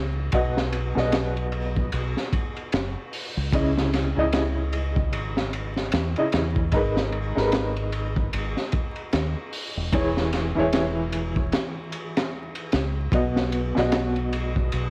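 A woody upright piano with tremolo, a low-pass filter and cassette wear opens this dark, smoky trip hop fragment over a round, punchy dub bass played with the fingers, before a crunchy breakbeat kit arrives at 0.3 seconds with a punchy kick, high-tuned snare, dark hi-hat and ride, and gritty 12-bit sampler saturation, all swung and moving through B, C#madd9, G#madd9 and E6 in a lightly reverberant home-cassette sound dusted with vinyl crackle.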